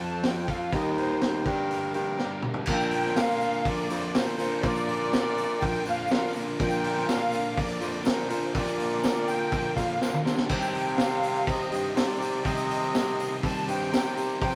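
Wistful and dusty, this folk rock and heartland rock excerpt sets a reedy, shimmering musette accordion melody over a baritone saxophone carrying the bass up front and a gritty vintage drum kit with dark cymbals and a punchy kick, with fills at 2.2 and 10.0 seconds. In the background, a picked steel-string acoustic guitar with audible finger squeak plays alongside a double-tracked, overdriven semi-hollow guitar riff, while a slightly detuned, woody upright piano plays very quietly and a symphonic string section holds barely audible sustained chords. A close, jingly tambourine joins at 2.7 seconds, and this rough rehearsal-room take rings in a moderate stone room.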